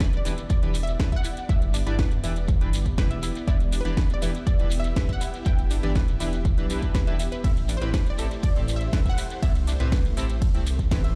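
A straight 4/4 progressive house groove at 121 BPM rides on a punchy, up-front electronic kick, with a house kit of cracking snare plus metallic hi-hats and ride under pumping sidechain, a grainy, close shekere in the background and a very quiet electronic impact over the first 1.5 seconds. In E minor, moving from Em7 to Am7 at 7.4 seconds, a dark, rumbling detuned saw bass with tube saturation sits low and forward, while a retro, glossy chorused polysynth plays stabs with 12-bit sampler grit and dub echo. A lush supersaw pad holds sustained chords, a nasal analog pluck spins background arpeggios through chorus and phaser, and a wave-folded unison pluck carries the melody with dub echo, giving this expansive, dreamy excerpt a big-room reverb sheen.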